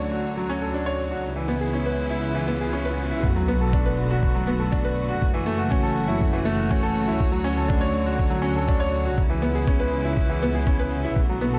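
A dark production and lush hall reverb wrap this short cut of cinematic, melancholic piano-and-strings electronica, moving at 121 BPM in a straight 4/4. A clear, worn grand piano sits up front playing a riff through a digital delay, over sustained chords from a rich, earthy chamber string section bowed with light vibrato and a smooth top. Beneath them a muted double bass section, veiled and distant with a soft attack, carries the bass line with sidechain pumping, while an overdriven, layered electronic shaker runs throughout. A very quiet riser, swell and sub drop build tension from 1.2 s, and at 3.2 s a muffled, thumpy sampler-style kick drum arrives as the drop lands with an impact. The harmony drifts through Dmaj7, C#m7, Bm7 and F#m7.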